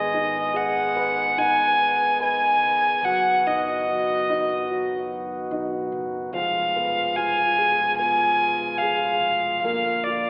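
A slow, straight 4/4 at 73 BPM carries this melancholic, emotional pop ballad fragment, moving through Abm, B/F#, Fdim and Bb. Up front, a single bowed violin sings the melody with a reedy, gut-string, period-style tone and light vibrato. Beneath it sit a dark, woody, slightly detuned upright piano with long sustain, soft romantic chords from a pipe organ's flute stops, and an amped fingered electric bass in the background, all played live in one room, drenched in a wet church reverb and filtered to a telephone sound.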